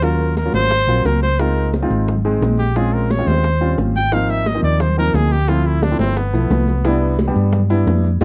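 A clear, punchy trumpet solos up front, played forcefully in jazz style from 0.0 to 7.2 seconds in this lively, danceable Afro-Cuban jazz excerpt at 176 BPM in straight 4/4, moving through chords such as Ebm7, Dbmaj9 and Cmaj7. A round, dark hollow-body electric bass sits prominently beneath a polished concert grand piano with deep low end and short sustain. In the background, tight high-tuned bongos and bright congas played with soft hands in a large room join grainy, saturated maracas to fill out the percussion in a rough home demo mix with studio reverb.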